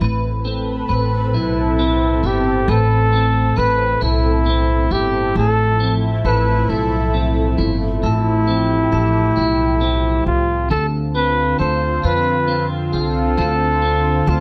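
Dramatic and aching, this slow 6/8 pop excerpt in A minor at 45 BPM sets a smooth-topped, punchy flugelhorn melody, entering at 1.4 seconds, over a woody pizzicato upright bass, a clean, compressed, double-tracked picked electric guitar and a lush, detuned sawtooth pad with chorus and phaser, moving from Amadd9 to Fmaj7 to Dm7 in a small room with light reverb.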